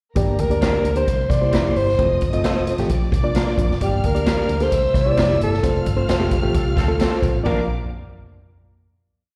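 Opening at 0.2 s with a vibrato-laden, distant alto saxophone singing motif-based song phrases over a lush bowed violin section, a reedy, lightly overdriven electric piano with fast tremolo, a round, foam-muted fingered bass with slides and a boomy, roomy big-band drum kit holding a backbeat soul groove, this danceable, warm uptempo 1960s-style soul piece at 132 BPM in Bb major adds lo-fi, slightly broken-up guitar chops with tremolo on the backbeat, brings in a dark, soft-attacked horn section at 6.5 s for punches at phrase ends during a band accent, and lands on a final Bb chord at 7.5 s, sounding like a live gig through the venue's PA with recital hall reverb and slapback echo on the saxophone, strings, electric piano, guitar and horns.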